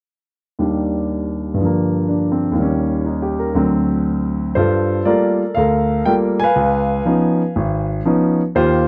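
Solo jazz piano with a smoky, cool mood, played on a concert grand that carries a deep bass and a natural, up-front presence. The performance swings its eighth notes but moves with a rubato freedom in 4/4, spanning the keyboard from low G#1 up to Ab5. Its harmony drifts through rich colors such as Ebmaj7, Gm7, Eb7 and D7 before settling into a second passage built on Gm9 and C#9 from 4.6 seconds. The piano is heard in a moderate studio ambience, and the production leans dark and warm overall. This short excerpt is cut from a longer piece, with the piano sounding from 0.6 to 8.9 seconds.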